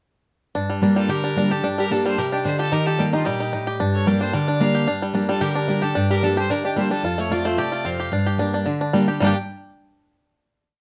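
A rustic, driving bluegrass piece in a minor key. The full-bodied dreadnought guitar sits up front from 0.5 s with alternating bass, strums and bass runs, beside the twangy, percussive three-finger rolls of the banjo. From 1.0 s a bright, distant fiddle bows a tune in running eighth notes, while a nasal, metallic lap resonator guitar plays a slide harmony line, mostly in thirds, in the background, all captured with light reverb and close, detailed microphones before a final chord at 9.2 s.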